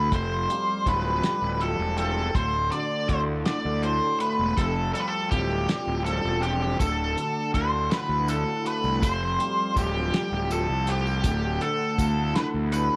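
Hazy and hypnotic, this psychedelic rock passage is cut from a longer piece and rolls along in a slow 6/8 with a straight feel, circling between Fadd9 and D chords. Up front, a dark octave-fuzz lead guitar carries the melody, its picked notes soaked in wah, distortion and tape echo. Beneath it, a twangy, slightly broken-up electric guitar through a small old amp plays a low riff through a phaser, while a round, overdriven fuzz bass anchors the bottom end. A cloth-damped, thuddy drum kit with a fat snare, tight kick, hi-hat and rolled-off top keeps time, and a very quiet tonewheel organ holds smooth, clean sustained chords with chorus vibrato. At 6.8 seconds a jingly tambourine enters in the background, and the whole mix sits in a moderate spring reverb.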